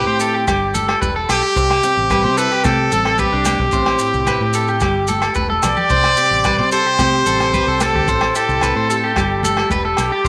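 This highlife guitar band excerpt moves at 110 BPM in a straight 4/4, sunny and danceable in C major. A brilliant, forceful trumpet carries the melody up front with light vibrato and a punchy pop attack, yet it sounds distant and roomy. Beneath it, a fingerpicked nylon-string guitar plays classical-style accompaniment, a twangy electric guitar at the edge of break-up picks arpeggios through slapback echo, and a foam-muted fingered electric bass holds the low end. In the background, a vintage drum kit with a punchy kick and rolled-off top plays hi-hat, kick and rim click, joined by ringing, compressed agogo bells and thick-skinned, high-tuned congas, while grainy maracas sit close. After a drum fill at 5.2 s, a very quiet tonewheel organ enters at 5.9 s with smooth sustained chords, key click and a slow rotary speaker, while the harmony cycles through Gadd9, C5, Am7 and Csus2. An echo chamber reverb and small room ambience lend the mix an old-time glow.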